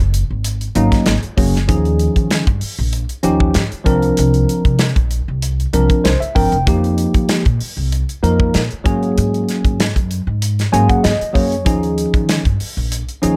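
A light reverb gives this short cut from a longer electric jazz fusion piece a close, focused sound, with an intense, nocturnal mood at 96 BPM in a straight 4/4. A woody, dark upright bass opens the recording, plucked pizzicato on steel strings in the low register. A modern studio drum kit joins almost at once, set up front in a small room, with a tight kick, a medium-tuned snare and hi-hat. At 0.8 seconds a clean tine electric piano enters as accompaniment, heard through its built-in speakers and treated with analog chorus and plate reverb, sitting prominently in the mix. The harmony moves through suspended ninth chords: Ab9sus4, Eb9sus4, C9sus4 and F9sus4, then back to Ab9sus4 and Eb9sus4. The electric piano adds short fills at 5.7 and 10.4 seconds, giving the groove a restless edge.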